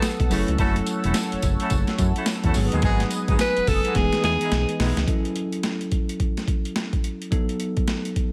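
A swung sixteenth-note groove from a gritty, overdriven boom bap sampler-style kit (thumpy kick, snare, hi-hat and tambourine, all up front) drives this confident, punchy new jack swing cut, with a fat analog bass joining at 0.2 seconds. A bright alto saxophone with scooped notes and delay carries the melody over bell-like tine electric piano chords, a shimmering chorused pulse-width pad with phaser, and delayed stabs from a smooth-topped horn section. After a drum fill, the other parts have stopped by 5.1 seconds, leaving only the kit and electric piano in light reverb.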